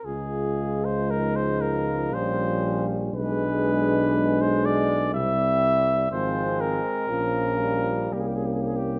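Close, detailed microphones catch this brass band in a recital hall whose moderate reverb lingers about 1.4 seconds, giving a short, solemn and melancholic fragment cut from a longer classical piece. At a slow 54 to 62 BPM in 3/4, the hymn-like music moves with a rubato feel as a mellow flugelhorn sings the melody up front. A French horn section with a vintage tone carries a second line in the background, and a euphonium with light vibrato fills out the accompaniment. A warm tuba anchors the bass up front, its smooth top and light vibrato lending weight to the low end. A clear trombone with a soft attack joins the accompaniment at 1.1 seconds, sounding distant and roomy behind the others. The harmony drifts from Db through darker chords such as Gdim/Bb, Bm6 and Fm/Ab before settling on an open C5 at 8.1 seconds.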